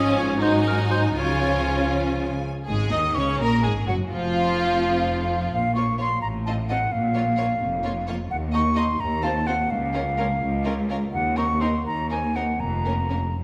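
Restless and urgent, this quick classical-period movement for symphony orchestra moves in a rubato 6/8 at around 78-88 BPM in dotted quarters, starting in Db major and turning to Bb minor from 8.3 s. A clear, distant violin section carries the melody with focused vibrato, while a second, richer violin section and a smooth-topped viola section in the background fill out the inner lines and accompaniment. A lush symphonic cello section and an even, studio-toned double bass section anchor the bass throughout. At the opening, a solo oboe with light vibrato adds a brief second line and a mellow, roomy French horn section holds sustained chords until 2.4 s. From 2.7 s a pure, up-front concert flute takes over the second line with straight, tongued tone, and the chords pass through Gbadd9, F7/A and Ebm6 before settling on Bbm/F, all set in a moderate scoring stage reverb in this fragment cut from a longer piece.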